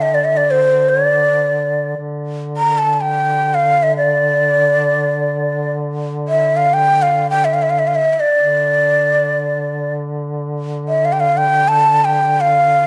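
A Turkish makam ensemble piece in free time and the makam ussak on D, this short excerpt carries a longing, soulful mood, tuned with A4 at 439 Hz. A breathy ney carries the melody throughout the full 12.9 seconds, its end-blown reed-cane tone soft in attack and shaded with vibrato, sitting close and up front with a slapback echo. Beneath it, a mellow duduk holds a drone on D3, quieter and more distant, with a roomy, folk-style character, vibrato and scooped notes. The ney's line moves within the range of C5 to Bb5, floating over the steady low drone. Light reverb and close, detailed microphones give the recording an intimate presence, and the excerpt is cut from a longer performance.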